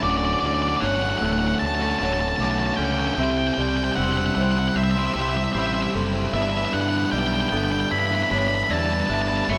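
Hopeful and cinematic, this rock excerpt moves at a steady 76 BPM in a straight 4/4 feel, set in D major and cut from a longer piece. Up front, a dark octave-fuzz lead guitar carries the melody, sitting beside a round, fuzzy fingered electric bass that anchors the low end. Behind them, a biting overdriven guitar and a sludgy distorted guitar both play a picked riff, while a twangy, bright clean electric guitar and a felt-muted upright piano, mellow and intimate with audible action noise, trace arpeggios. A soft, organ-like pad with a pure, detuned triangle tone and slow attack holds sustained chords, thickened by ensemble chorus and its own reverb. The band sounds as if playing live together in a wet stone room, and the harmony moves from Dmaj7 to Cmaj7 at 3.2 seconds and on to G69 at 6.3 seconds.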